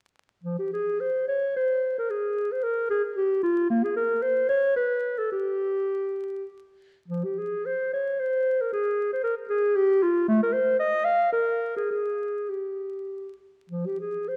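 A vinyl crackle and the moderate reverb of a scoring stage surround this short excerpt from a classical, baroque-style fantasia for unaccompanied clarinet, tuned to A4 = 437 Hz. The dark-toned clarinet sits up front, playing alone from 0.4 to 14.4 seconds with a soft attack and smooth upper register, ranging from F3 to F5. It moves in a rubato 3/4 between 94 and 117 BPM, and the mood is introspective and grave.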